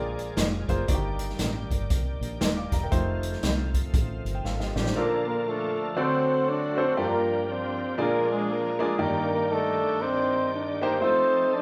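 A live band plays together in one room, bathed in a lush studio reverb that gives this short cut from a longer uptempo gospel piece a jubilant yet reverent glow. At 119 BPM in 4/4 with a swung eighth-note feel in Bb major, a warm, intimate baby grand piano carries the accompaniment, its short sustain and audible action noise sitting up front. A bright, lightly overdriven tonewheel organ holds sustained chords through a slow rotary speaker with chorus vibrato and key click. In the opening bars, a very quiet, classical-style French horn section adds soft sustained chords, a round, punchy fingered electric bass anchors the low end, and a swinging big-band drum kit with a punchy kick and medium-tuned snare plays up front before a drum fill at 4.4 seconds. Those three parts stop at 4.9 seconds, and a smooth, jazz-style horn section with light vibrato and octave doubling takes the melody from 4.8 seconds over piano and organ.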